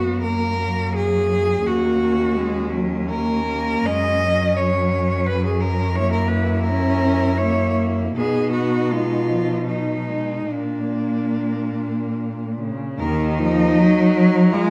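A dark, reverberant recital-hall sound frames this solemn, yearning classical fragment, cut from a longer piece for a cello ensemble of four single players, each bowed with vibrato. The melody sits on a clear, smooth, even cello placed up front, while a second cello carries a rich inner line that sounds distant behind it. A focused accompaniment cello with a smooth top fills the middle register. The bass cello is expressive, with a soft attack and portamento, also up front, and it drops out at 13.6 seconds, just before the piece ends at 14.7 seconds. Moving in a flexible rubato triple metre, the harmony drifts from F# through D#m7, Gb7, B and Bb before settling on Ebm at 13.0 seconds as a brief new section begins.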